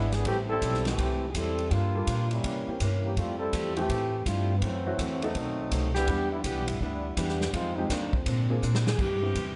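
An energetic, brassy big band swing excerpt at 165 BPM in C major opens with a clear, up-front trombone section soloing over a woody, growly pizzicato upright bass, a boxy picked acoustic guitar and an intimate baby grand piano in the background, and a punchy, airy drum kit, moving through jazzy seventh and ninth chords before a drum fill at 8.6 seconds leads the vibrato-rich saxophone section in with the melody at 8.9 seconds, all under light reverb.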